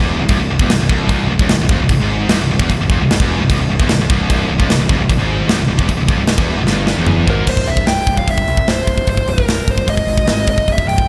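Heavy metal at 150 BPM in C phrygian dominant, relentless and aggressive, cut from a longer piece: two bright, high-gain distorted guitars grind out a low riff, one scooped and the other set back, over a growly fuzz bass and a tight, polished drum kit with bright cymbals, until a drum fill at 6.7 seconds leads into a dark, bluesy overdriven lead guitar entering up front at 7.3 seconds, the chords moving from C to Ab5 in a big arena sound with lush hall reverb.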